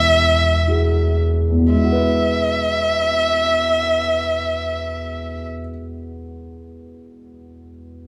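Bathed in the wet reverb of a large studio where the players share one room, this hopeful, emotional pop fragment in E major at 58 BPM opens on an Eadd9 chord and slows over its first 1.7 seconds, as a dark, nasal, boxy bowed violin carries the melody up front with vibrato and portamento until 5.5 seconds, while a soft, felt-muted upright piano offers mellow, intimate accompaniment spanning E1 to B4 through to 8.1 seconds.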